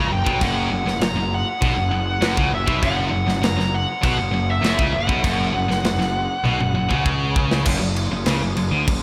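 Aggressive and dark, this heavy metal excerpt at 99 BPM in F# major pairs an up-front, high-gain lead guitar melody with two bright, distorted rhythm guitars riffing low in the background, while a growly, fuzz-overdriven picked bass anchors the bottom. A tight metal drum kit with a medium-tuned snare, tight kick, crash and toms enters at 0.3 seconds and sits mid-forward with a rolled-off top, throwing in a fill from 6.5 seconds. The lead drops out at 7.0 seconds as the music moves into a new section at 7.7 seconds, all set in a lush hall reverb that gives a big arena sound.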